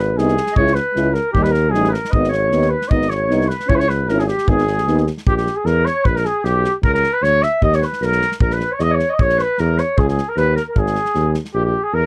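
Bittersweet and fiery, this Balkan brass band excerpt in G# harmonic minor moves at a brisk 153 BPM in 2/4, with a mellow, lightly vibrato trumpet leading up front over a roomy tuba bass, a distant clarinet second line, two euphoniums (one clear, one soft-edged) adding background accompaniment until 5.0 seconds, and a punchy, airy acoustic drum kit of kick and snare driving a dry, close 1970s-style studio sound.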